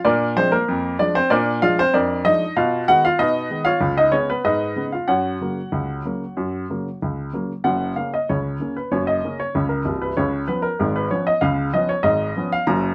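Ragtime piano in F# major, lively and playful, moving at 95 BPM in a straight 2/4. A single upright piano carries the whole passage alone, its woody, polished tone sitting present and up front. Its range stretches from B#0 deep in the bass to A#5 in the upper register, and a light reverb lends a touch of space. The harmony passes through Bb7, G#m/B and C#7 before settling on F# at 5.1 seconds, and a new section begins at 7.6 seconds with C#7 returning at 10.2 seconds. The tuning sits slightly high at A4 = 443 Hz, and this short passage is cut from a longer piece.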